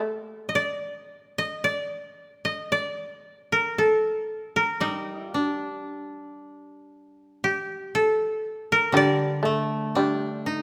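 Japanese traditional chamber music, meditative and still, drifts in free rubato at around 54-60 BPM in G hirajoshi, cut from a longer piece. A woody, fingerpicked koto carries the melody throughout and is joined at 4.8 seconds by a second, brighter koto playing accompaniment. A buzzing, percussive, plectrum-plucked fretless shamisen sounds briefly at the opening, returns powerfully at 8.9 seconds, and joins the dry, close kotos in a moderate scoring-stage reverb.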